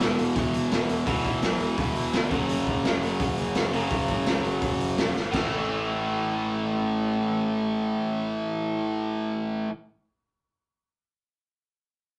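A rough rehearsal-room recording with tube saturation and a touch of reverb catches a rowdy, energetic stretch of punk rock, cut from a longer piece. Two bright, picked electric guitars sit up front playing riffs, one biting and overdriven, the other tight and distorted, while a fuzzy, growly bass hums in the background over power chords that shift from E5 to F#5 and then A5. A raw, gritty garage drum kit with a punchy kick and rolled-off top drives the first half with crash, hi-hat and snare, hits a fill at 5.2 seconds and stops at 5.4 seconds, leaving the guitars and bass to carry on.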